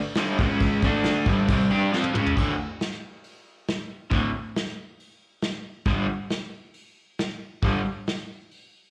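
A straight 4/4 pulse at 136 BPM drives this raw, rowdy garage rock excerpt, cut from a longer piece and carried by a vintage drum kit played with brushes from 0.1 to 8.6 seconds. The kit sits up front with a punchy kick, a medium-tuned snare, dark cymbals and a rolled-off top, covering crash, ride, hi-hat and toms, and a drum fill from 1.9 to 2.4 seconds leads into the second section. A crunchy, bright overdriven electric guitar plays a picked, double-tracked riff spanning D2 to G4, colored by tremolo and slapback echo and sitting up front beside the drums. The harmony moves through C#5, D5 and G5, landing back on D5 at 2.4 seconds as the longer section begins and reaching G5 again at 5.9 seconds. The sound is that of a live club gig heard through the venue's PA, with light reverb and small-room ambience.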